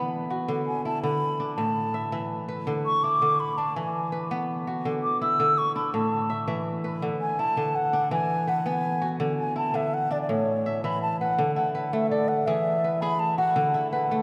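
Bathed in the long, wet reverb of a cathedral-like hall, this flowing snippet of West African string and xylophone music in a rolling 12/8 sets a crisp, ringing, fingerpicked kora, placed up front and spinning arpeggios, beneath a reedy wooden baroque flute whose pure, tongued melody carries vibrato, moving into a brief new section at 11.4 seconds.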